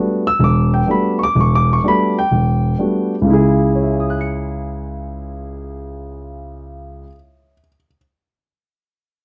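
Jazz at 125 BPM in 4/4 with a swung eighth-note feel, this brief cut from a longer piece has an intense, hypnotic mood. A lone grand piano, warm and up front, spans from the deep bass to the high treble across its 8 seconds, opening on an A13sus4 before moving to C#m at 3.3 seconds. Light reverb and a dark production give the sound a shadowy, close-in character.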